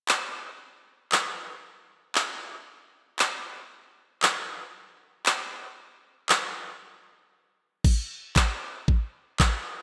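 A straight 4/4 pulse at 116 BPM drives this summery, carefree pop excerpt, where a layered electronic drum kit with knocking kick, handclaps and crash cymbal sits up front under gated reverb from 0.1 to 9.5 seconds, with a brief break from 7.3 to 7.8 seconds before a new section begins at 7.8, all within a lush hall ambience and bright 1980s-style digital production.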